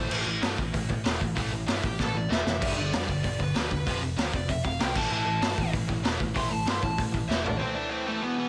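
Punk rock at 192 BPM in A minor, this short cut from a longer piece feels angry and urgent, driven by a straight 4/4 pulse. A dark, smooth lead guitar with overdrive and digital delay carries a solo melody from the start, ranging from A3 up to C6. Beneath it, an overdriven semi-hollow guitar with a bright, hollow-body tone and a tight distorted guitar sit in the background playing riffs, while a growly, punchy overdriven bass anchors the low end. A raw garage drum kit sits up front with a punchy kick, a medium-tuned snare and a gritty, saturated small-room sound with a rolled-off top, breaking into fills at 2.0 and 7.3 seconds. The chords move from A5 through G and F5 back to A5, landing on A minor at 7.6 seconds as the bass, drums and distorted guitar stop, leaving the lead and semi-hollow guitars ringing briefly in light reverb.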